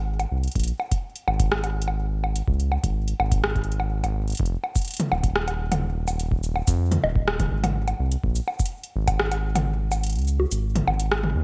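A round, dark analog bass sits up front from the very start, its evolving tone blending sawtooth, sine and triangle waves with a fast attack and long sustain, reaching down to Eb1. Around it, an electro analog drum machine scatters bongos, cabasa, metallic hi-hat, rim clicks and toms through gated reverb, while a deep, tape-warm electronic kick enters at 0.6 seconds and stops at 9.2 seconds. This glitchy, intricate IDM fragment, cut from a longer piece, carries a bright 1980s-style digital sheen and light reverb.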